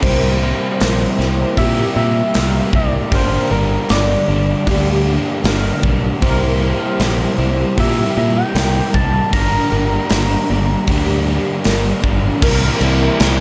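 Heard from the first moment, a round, gentle FM synth lead carries the melody through chorus, phaser and analog delay until 11.7 seconds. This wistful, hazy rock excerpt in a shoegaze and dream pop vein moves at 77 BPM in C mixolydian. A woody, boxy twelve-string acoustic guitar fingerpicks shimmering, octave-doubled arpeggios in the background. Two overdriven hollow-body electric guitars play riffs, one dark and bathed in lush chorus, the other warm and set back with reverse reverb. Beneath them sit a direct, fingered electric bass and an up-front big-room rock kit with a punchy kick and bright cymbals, over a C7 and Gm progression in a light studio reverb.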